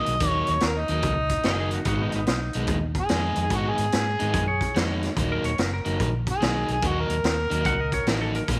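An overdriven, gritty harmonica carries the melody up front with scooped notes, tongue slaps and light vibrato in this soulful, mournful electric blues shuffle in Eb minor at 145 BPM, backed by a bright, crunchy picked guitar riff, a dark, round muted electric bass and a saturated garage drum kit with a boomy kick, while a clean, twangy slide lap steel adds a second line from 1.5 seconds, all within a light small-room ambience.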